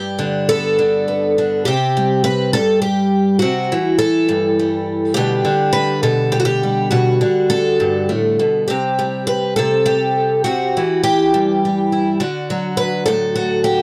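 The recording has a dry, close feel with a touch of light reverb, placing a single picked twelve-string acoustic guitar up front in the sound. This is solo fingerstyle folk in 6/8 with a straight feel, moving at an unhurried 68 BPM with a pastoral, hopeful mood. The twelve-string carries everything from 0.0 to 13.8 s, ranging from G2 up to B4, its octave-doubled courses giving the tone a shimmering, concert-grade ring. After a brief opening on G, the music settles at 1.7 s into a longer passage that moves through C, G/B and back to C before reaching D at 12.2 s. Cut from a longer piece, it plays like an open-ended excerpt.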